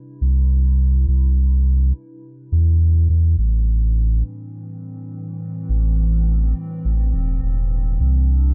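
A swung sixteenth-note feel in 4/4 underpins this short, spacious ambient dub passage cut from a longer piece, with a warbling, lo-fi pad fading in from the start to hold sustained chords that move from Cmaj9 to Am11 at 3.4 seconds and Cadd9 at 8.0 seconds. The pad's slow-attack, nostalgic vintage tone carries chorus and its own reverb, while a round, sine-like sub bass enters at 0.2 seconds and sits up front, deep and mellow, in an otherwise dry room.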